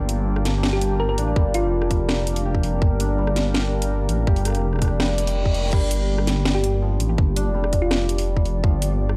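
A dry, gritty recording carries this tense, dark cut of half-time drum and bass, where a moody pad with sampler grit and sidechain pumping holds sustained chords over a deep, rumbling detuned saw bass, while a shimmering santur rings out arpeggios through analog delay. An overdriven kit of cracking snare, bright hats, rim clicks and crash sits in a small room, joined at 1.4 seconds by a tight, up-front electronic kick. A round, tine-like synth pluck carries the melody from 0.7 seconds and returns later, and a brief reverse cymbal sweeps in at 5.2 seconds.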